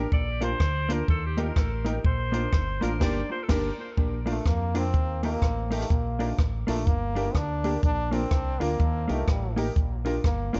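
A dark, softly reverberant mix with its top end rolled off carries this cheerful, bouncy ska passage with a swung feel, cut from a longer piece. A vintage-toned alto saxophone with light vibrato takes the solo over woody upright piano stabs, a round, punchy dub bass and a dry cocktail drum kit with a high-tuned snare and rim clicks up front, while a clean, compressed hollow-body jazz guitar accompanies; a band accent lands at 3.0 seconds. At 4.0 seconds the saxophone gives way to a bright trombone solo, and tape echo colours the horns, piano and guitar.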